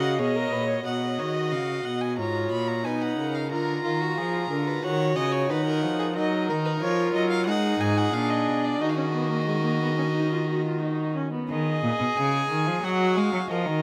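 Solemn and contemplative, this baroque-style fugue for string quartet moves at 90 BPM in a straight 4/4, settling into E-flat minor from 6.2 seconds. The four bowed players use gut strings in period style, giving the ensemble a reedy character throughout. The first violin carries the melody with a rich tone and light vibrato, while the second violin weaves a nasal, smooth-topped second line beneath it. The viola supplies warm accompaniment until 11.5 seconds, where it drops out as the music turns to a new section, and the cello sits up front with a rich bass. A cathedral reverb with a 6.1-second decay bathes the quartet in a vast, echoing space, and this cut from a longer piece ends at 13.8 seconds.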